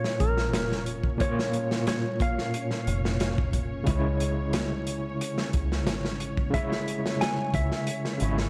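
Trip hop at 90 BPM with a cinematic, melancholic feel, cut from a longer piece. It moves from Bbm to Dbm over a crunchy, saturated breakbeat kit with a tight kick, a round, foam-muted dub bass that enters at 0.2 s, and a barky, overdriven tine electric piano with medium tremolo and tape echo. A twangy, compressed lap steel carries the melody through tape echo and vintage 12-bit sampler grit, while mellow sawtooth string-machine cellos with ensemble chorus sit in the background, all in a dreamy mix soaked in hall reverb and vinyl crackle.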